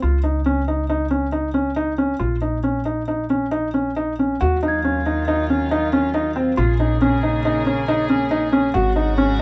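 A felt-muted upright piano sits up front with soft, intimate arpeggios and audible action noise, while a woody pizzicato upright bass supports it in this restless, urgent piece of contemporary chamber music in 5/4 at 138 BPM, in Eb minor. At 4.4 s a distant, reedy string section enters with sustained, lightly vibrato chords in a period-style gut-string tone, and a mellow, bell-like glockenspiel rings briefly in the background at 4.7 s. The harmony moves from Bbm through Ebmadd9 and Bbm7 to Ab7sus4 in a moderate small-room reverb, and the passage is cut from a longer piece.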